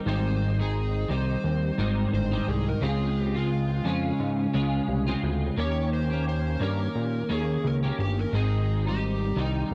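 Hazy and sunny, this short indie pop cut at 87 BPM in Ab major sways with a lightly swung 16th feel as an up-front, clean twelve-string electric guitar wrapped in ensemble chorus and vibrato picks through Abmaj7, Dbmaj7 and Eb7, a dark, overdriven slide guitar bathed in lush chorus sings the melody from 0.1 seconds, and a fat, detuned analog bass with a filter sweep holds the low end, all captured in a dry, gritty, cassette-tinged recording with digital ambience.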